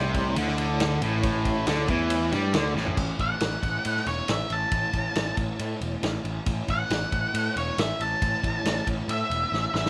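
A sludgy, double-tracked distorted guitar riff opens this swaggering blues rock and southern rock excerpt, alongside a round, punchy fuzz bass and a piping tonewheel organ holding sustained chords through a slow rotary speaker with chorus vibrato and key click, tucked in the background. A vintage acoustic drum kit with dark cymbals, a medium-tuned snare and a tight kick drives a straight, steady groove, with a fill marking the end of the opening riff. The riff guitar drops out at 3.0 seconds, and at 3.2 seconds a dark, octave-fuzz lead guitar takes over with a picked solo high above the band. The bass, drums and organ carry on beneath the solo, and the drums close with another fill from 9.5 seconds. The guitars, bass and drums sit up front in a small room with light reverb, giving the trio a close, natural sound.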